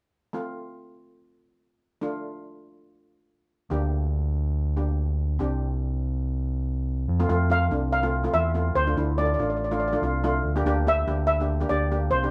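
Festive and bouncy, this calypso moves at 142 BPM in F major with a light swing, opening at 0.3 seconds on a close, dry double-seconds steel pan providing accompaniment. An overdriven, punchy electric bass with a dark, round tone joins at 3.7 seconds, and at 7.5 seconds a mellow, airy lead pan played with soft rubber sticks carries the melody above as the harmony moves through Fmaj7, Dm7 and Gm/D. The band sounds live together in one room with moderate studio reverb, in a passage cut from a longer piece.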